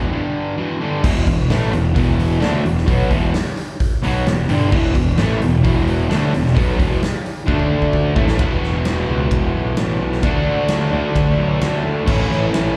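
A straight 4/4 pulse at 130 BPM drives this sunny classic rock excerpt, heard as a live gig through a venue's PA with club reverb and small-room ambience. A bright, double-tracked distorted electric guitar riff opens alongside a growly, fuzz-laden picked bass, both up front, before a huge arena drum kit with a punchy kick and medium-tuned snare enters at 1.0 seconds. The chords move from G5 and E5 to D5 and A5, and a drum fill at 7.5 seconds leads into a closing passage over Esus2, D and A.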